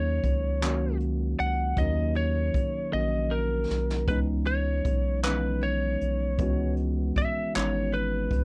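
A slow six-eight R&B groove at 52 BPM rolls along on a distant, roomy brush kit of boomy kick, snare, hi-hat and handclaps that enters at 0.2 s and plays a fill from 2.9 s, in a sultry, late-night mood in C# dorian that moves from D#m7 to C#m9 at 4.1 s. A round, deep analog bass sits up front with a nasal filter pluck, while a worn, slightly out-of-tune tine electric piano supplies clean, direct accompaniment. Over it all a bright, twangy lead guitar, slightly broken-up and compressed, takes a picked solo with slapback echo in a dry sound, cut from a longer piece.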